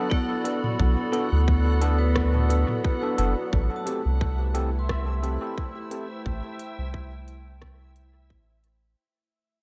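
A tight, overdriven electronic kick from 0.1 s and an electronic kit of crisp hi-hats, rim clicks and toms with dub echo from 0.5 s, both re-recorded in a large room, are joined at 0.8 s by a deep, round, soft dub sub bass that sits up front in this meditative, spacious ambient dub excerpt at 88 BPM in A dorian with a light 16th-note swing. Above them a warbling, detuned, lo-fi tape-like pad holds chorused chords, a gritty electric piano through a combo amp adds dub-echoed stabs, a bright, dry vibraphone with hard mallets rings out arpeggios in the background, and a reversed, granular texture swells dreamily in its own reverb. The harmony moves from Bm7 to Am7 at 3.5 s, where the music begins a fade-out, as it is cut from a longer piece.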